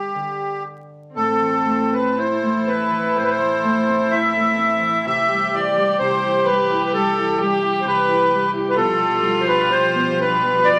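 A reedy accordion with light tremolo tuning carries the melody up front over thumb-plucked Celtic harp in this Celtic slow air, a nostalgic, pastoral excerpt taken in a rubato 4/4 at around 59-66 BPM. At 1.2 seconds a single bowed viola enters with a soft-attacked, floating second line played sul tasto, while a smooth studio string section holds sustained chords with light vibrato in the background. The moderate large-studio reverb and a layer of vinyl crackle give the sound a gently aged, ringing space.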